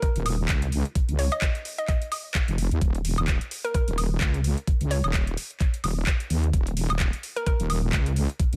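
A knocking, tape-warm electronic kick drives this swaggering, bouncy bass house clip at 129 BPM in 4/4, swung on the sixteenths, while an overdriven garage kit adds handclaps, metallic hi-hats and woodblock. From 0.2 seconds a heavy, detuned wobble bass sits up front, saturated and compressed with chorus and sidechain pumping. Above it, a hollow, mellow square-wave pluck with a sub octave and filter pluck carries the melody through chorus and tape echo, dropping out at 7.5 seconds in this dry, close-sounding excerpt.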